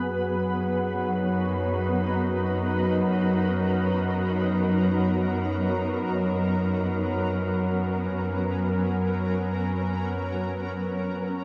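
Floating in free time, this serene ambient fragment from a longer piece rests on a single Bmaj7/F# chord, held by an up-front pad with an ethereal, octave-up shimmer, granular texture, chorus and slow-blooming attack. Beneath it, a distant, lush cello section plays a bowed low bass note with intense vibrato until 11.1 seconds, while a mellow analog drone with a nasal, evolving tone and chorus hums in the background. A huge, wet reverb with a long tail and a dark, warm production wrap the whole sound in a soft haze.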